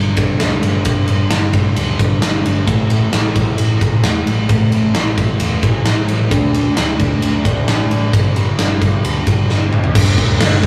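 A fuzz guitar riff and an overdriven, picked electric bass open this wistful, hazy slice of shoegaze and dream pop rock, joined at 0.2 seconds by a big acoustic rock drum kit. At 132 BPM in a straight 4/4, the double-tracked guitar spans G2 to D4, its distorted fuzz tone warm and picked. The bass growls underneath with an amped, punchy grit, while the drums sit up front with a punchy kick, a medium-tuned snare, toms, crash and ride cymbals, and a mid-forward, rolled-off top end. The harmony moves through G5, A5 and D5 power chords before returning to G5, and a drum fill from 9.5 to 10.0 seconds closes the phrase. A moderate small-room reverb and the rough rehearsal-room sound give the clip a close, unpolished feel, as though cut from a longer piece.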